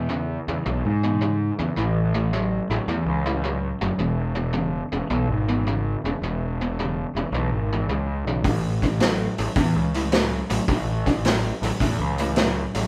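A band playing live in a small room with moderate reverb gives this raunchy, driving blues rock and southern rock excerpt a close, up-front sound, swinging in 4/4 over a move from E to A and back. A bright, double-tracked overdriven electric guitar plays a low riff from the start alongside a punchy, fuzzy picked bass. A gritty vintage drum kit with a punchy kick, a medium-tuned snare, hi-hat and a rolled-off top only comes in at 8.4 seconds, as the chords return to A.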